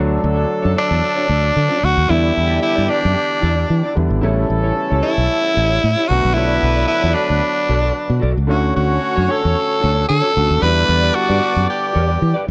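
Joyful and danceable, this disco clip from a longer piece moves in a straight four-beat feel over a cycle of Dmaj7, Em7, A7 and Bm7 chords. A fingered electric bass sits up front with a round, dark, foam-muted tone, while a clean electric guitar, softened by ensemble chorus, and a long-sustaining grand piano fill in quietly behind it. A mellow horn section adds tight, punchy stabs with vibrato and octave doubling, set back in a roomy, distant space. From 0.8 seconds, a raspy, growling tenor saxophone takes the lead up front, gritty yet smooth on top, with its own vibrato. Light reverb and studio ambience frame the whole clip.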